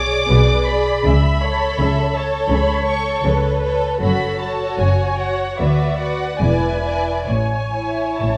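Classical slow romantic movement for string orchestra, warm and lyrical in mood, moving in an unhurried 4/4 with a rubato feel in an excerpt cut from a longer piece. A lush, distant violin section sings the melody with vibrato above an even, up-front second violin line, while a smooth-topped studio viola section fills in the accompaniment. Rich cellos and focused double basses carry the bass through to an A chord at 7.3 s, all five sections bowing throughout in a moderate recital hall reverb.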